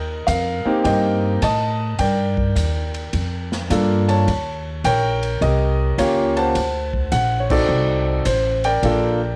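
A dry home recording on cassette captures this swinging, late-night jazz piano trio excerpt in G minor at 105 BPM, where a clear, long-sustaining concert grand with cassette-tape colour carries the melody up front over a woody, thumpy pizzicato upright bass, and a quieter, tape-tinged big-band drum kit with a punchy kick and dark cymbals joins at 0.3 s, as the chords move from Cm7 through Gm7, Eb7 and D7b9 with a band accent at 7.4 s.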